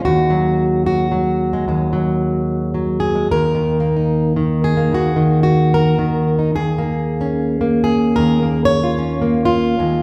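Intimate and melancholic, this short excerpt from a longer folk piece features a solo fingerpicked, plugged-in steel-string acoustic guitar at a slow 74 BPM in 4/4 with a gentle swing on the eighth notes. The jumbo-bodied guitar sounds dark and full, sitting up front as it moves from Gbsus2/Eb to Ebm at 3.3 seconds and Bbm/Eb at 6.5 seconds across a range from Eb2 to Db5. A wet recital-hall reverb, as if captured in a church or concert hall, surrounds the playing.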